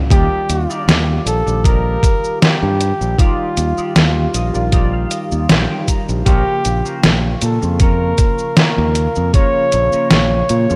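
Vaporwave at 78 BPM in 4/4 with a light sixteenth-note swing, this short excerpt feels faded and woozy, drifting from Ebmaj9 to Bbm at 6.3 seconds. A mellow flugelhorn carries the melody up front in a jazz style, its light vibrato trailed by tape echo. Underneath, a bright fingered electric bass sits direct and forward, while a thumpy electronic kick and a detuned 8-bit drum machine with cabasa, hi-hat and a medium-tuned snare bring sampler grit and a tape-softened punch, re-recorded in a large room; the kick drops out at 9.5 seconds. Further back, a clean tine electric piano with lush chorus plays accompaniment, and a dark, warbling, lo-fi pad holds sustained chords with a slow attack and long release. A twangy, picked clean electric guitar plays a riff through analog chorus and tape echo, stepping into a fill between 4.0 and 6.3 seconds. The whole thing has the rough, lightly reverberant feel of a home demo.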